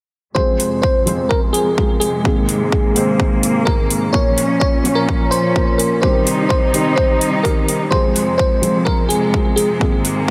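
A punchy, up-front electronic kick drives a straight 4/4 pulse at 127 BPM, with metallic electronic hi-hats joining at 0.6 s, in this anthemic, euphoric slice of festival progressive house cut from a longer piece. A sparkling, bell-like FM electric piano carries the melody through chorus, phaser and tape echo, while a dark, felt-muted upright piano with audible action noise pumps underneath, and a lush, bowed studio string section holds sustained chords through a filter sweep across the Fm, Abadd9, Bbm and Cm progression. The dreamy mix is soaked in a huge ambient reverb.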